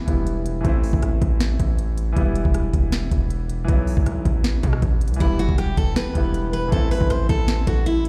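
Heard through a large, reverberant room as if blasted on a big sound system, this melancholic, hard-hitting trap excerpt in E minor rides a half-time feel at 158 BPM, with a clear, polished concert grand piano comping from the start, a saturated, aggressive 808-style bass and a knocking, up-front trap kit of crisp hats, sharp snare and rim clicks entering at 0.1 seconds, before a bright, full-bodied picked steel-string acoustic guitar carries the melody through tape echo from 5.2 seconds.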